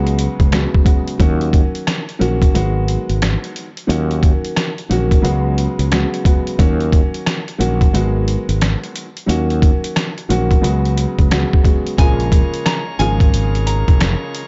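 A swung, 89 BPM boom-bap hip-hop groove in Eb minor sets a reflective, dark mood, with a compressed, pitched-down sampler-style kit of thumpy kick, medium-tuned snare, rim click and hi-hat up front beside a growly, punchy fretless electric bass and a woody, mellow upright piano cycling through Db7sus4, Ebm7 and Abm7, until at 12.0 seconds the chords shift to Bbm7 as a fingerpicked flamenco guitar line with tape echo and a shouting, lightly overdriven tonewheel organ through a stopped rotary speaker join in a dark, warm, dry mix capped at 7.8 kHz.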